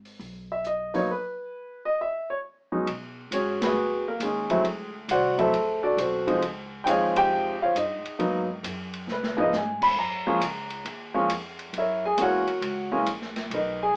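Jazz piano trio excerpt at a moody, swinging 135 BPM in 4/4, with a clear, up-front upright piano carrying the melody over woody pizzicato upright bass and a dark, smooth drum kit with a boomy kick and rolled-off top, all three playing live in a small reverberant room with a small-speaker sound, hitting band accents at 3.5 and 7.1 seconds and a drum fill at 9.1 seconds as the harmony moves from G#m through B69, D9 and C#maj7 toward F#maj7 and F#7.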